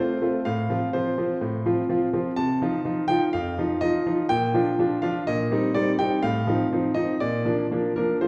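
Playful and elegant, this short passage from a classical-period piano sonatina moves in a straight, even 4/4. A solo concert grand carries everything, its tone brilliant and smooth with a deep bass, and it sits up front in the sound, ranging from F2 up to A5. The harmony begins on an F chord with A in the bass at 0.5 seconds and settles home on B-flat by 7.2 seconds, passing through dominant and minor-seventh colours along the way. A generous recital-hall reverb gives the piano a church-like bloom, while the instrument's slightly vintage character adds period charm. The passage lasts just over eight seconds, cut from a longer piece.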